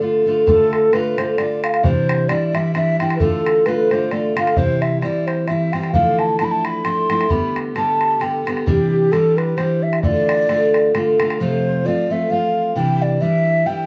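A fingerpicked steel-string acoustic guitar opens this spirited, dark Celtic waltz in D dorian at 132 BPM, joined at 0.5 seconds by a hollow, airy wooden flute with gentle vibrato carrying the melody over a damped, tight bodhran that drops out at 11.4 seconds as the tune moves from Dm and Cadd9 toward F, all in a live-room sound with a short, wet ambience and softened highs.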